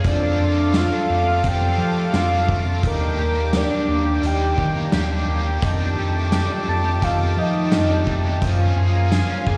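A straight 4/4 pulse at 86 BPM from an oversized, low-tuned drum kit with punchy kick, hi-hat, snare and tambourine drives this floating, dreamy dream pop piece in Eb lydian, where a round analog bass sits up front beneath a lush detuned unison pad, twangy arpeggios from an electric guitar at the edge of break-up with analog chorus and digital delay, a biting double-tracked overdriven guitar colored by harmonic tremolo, and a soft octave-layered synth lead entering at 0.1 s with phaser and vibrato, while the mix sits in concert hall reverb as the chords move from Bbmaj7/F through Ebmaj7 and F13 to Gbmaj9.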